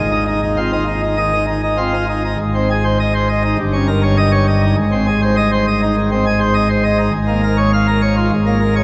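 A long cathedral reverb of about 6.1 seconds hangs around a full, brilliant pipe organ plenum, its mixtures and crisp chiff sitting up front in the sound. This dramatic, stormy passage from a classical organ toccata moves at 101 BPM in straight 4/4, in Ab major. The solo organ spans G1 to F5 and moves from Ab through Eb7/G, back to Ab, and on to Bbm7/Ab, with a new section opening at 2.4 seconds in this short 8.8-second cut from a longer piece.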